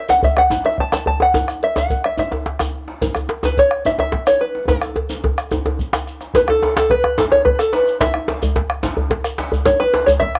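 Festive and earthy, this West African drum ensemble excerpt in 12/8 at 144 BPM in A major pentatonic puts a fingerpicked, twangy open-back banjo up front with a plunky, cassette-tinged melody over a deep, dark bombo, a tight, cracking close djembe, a second djembe with metal rattles set distant in a large room, a grainy shekere and a dry metallic cowbell entering at 0.6 seconds, with a drum fill from 4.7 to 6.3 seconds leading into a new section, all in light reverb and studio ambience.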